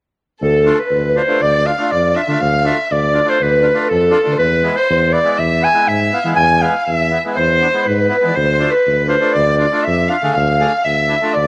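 Wet spring reverb and a small-room ambience surround this short fragment of a longer piece, and the lossy compression artefacts are audible. It is a soulful, festive klezmer passage in a straight four. A clear, classical-style clarinet carries the melody up front with a slapback echo, and a distant bowed violin adds an expressive second line with vibrato and portamento. A warm tuba anchors the bass with light vibrato, and a reedy, mid-forward accordion accompanies from 0.7 s over chords moving from Dm to E and back to Dm.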